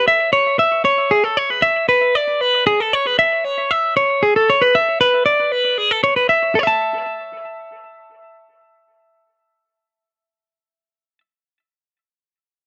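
A lone clean electric guitar opens this rock fragment at 0.0 s and carries it alone until it stops at 11.2 s. The guitar sounds picked, twangy and bright, with a compressed edge, sitting up front in the mix and colored by tape echo. The piece moves in 6/8 at 77 BPM counted in dotted quarters, with a straight feel in A major and tuning set at A4 = 441 Hz. The guitar's intricate line ranges from G#4 to A5, alternating unaccompanied passages with E7(omit3) before a second passage begins at 6.6 s and settles on A5. Light reverb and a dark, warm production frame the bright mood of this short piece lifted from a longer work.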